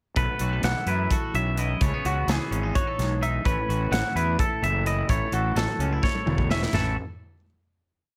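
A light reverb and a studio room give this short, complete math rock and midwest emo piece an up-front, intricate and playful sound, set in A lydian at 256 BPM in a straight 7/8. A compressed, twangy electric guitar picks a clean arpeggio ostinato high above a twelve-string electric guitar, whose bright, syncopated fingerstyle accompaniment carries a subtle chorus, while a dark, round fingered bass with fuzz overdrive drives a syncopated riff. The acoustic kit pairs bright cymbals with a punchy kick and a medium-tuned snare. The progression moves through chords such as C#m11 and A69, and a drum fill at 6.0 seconds leads to a final A6 chord at 6.7 seconds.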